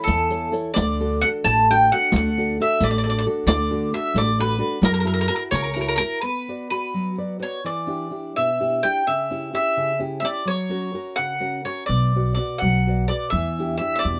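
A mandolin and a fingerpicked nylon-string guitar open this Italian folk serenade together, joined at once by pizzicato upright bass and a softly played riq. It moves in a lilting 6/8 at 86 BPM, with uneven beats and rubato that give it a romantic, wistful sway. The picked mandolin carries the melody up front with a round tone from its doubled strings, while the bright classical guitar accompanies, also up front, and the bass adds a woody, growly thump beneath. The riq's dark jingles sound close and dry, but it drops out at 5.9 s, and the bass falls silent just after. At 6.2 s the music turns from D major to B harmonic minor, leaving mandolin and guitar alone until the bass returns at 11.9 s. Close, detailed microphones and light reverb keep the sound intimate in this short cut from a longer piece.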